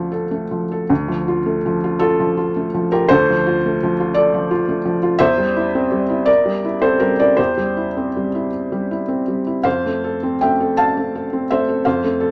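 A felt-muted upright piano plays alone from the very start, its mellow, muffled tone sitting up front with audible action noise and a short sustain in a moderate studio ambience. This intimate, wistful piece of neoclassical minimalist piano moves in a rubato 6/8 at roughly 49-58 BPM in dotted quarters, in D minor. The harmony passes from Dm to C/E at 5.2 seconds and settles on F at 9.7 seconds before the excerpt is cut from the longer piece.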